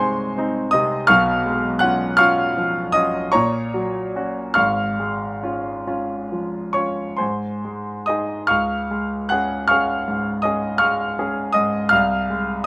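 Classical romantic nocturne for solo piano in Db major and a rubato 9/8 at 44-57 BPM, tuned to A4 = 441 Hz, this nostalgic, tender passage cut from a longer piece sets a clear, present grand piano up front across a range from Ab1 to Gb6, moving through chords such as Ab/C, Db7/Cb, Gb/Bb and Db/Ab, then Ab at 7.2 seconds, Db at 8.5 seconds and Ab/C at 11.9 seconds, all captured with close, detailed microphones in light reverb.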